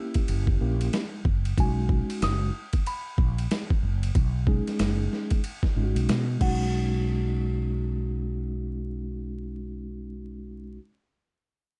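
A swung 93 BPM groove in 4/4 anchors this smooth, cool jazz-hop fragment in B major, cut from a longer piece. Gritty, pitched-down boom bap sampler drums sit up front with a thumpy kick, a medium-tuned snare, hi-hat, ride and crash, all compressed, overdriven and re-recorded in a large room, before dropping out at 6.6 seconds. A round, dark fretless electric bass with a subtle chorus carries the low end from 0.3 seconds, while a clean tine electric piano voices warm chords through its built-in speakers, moving from F#7b9 to B69. Above them, a delicate, bell-like small celesta with soft felt hammers sings a sweet, mellow melody. The production is dusky and lightly reverberant, with vinyl crackle hanging over the mix.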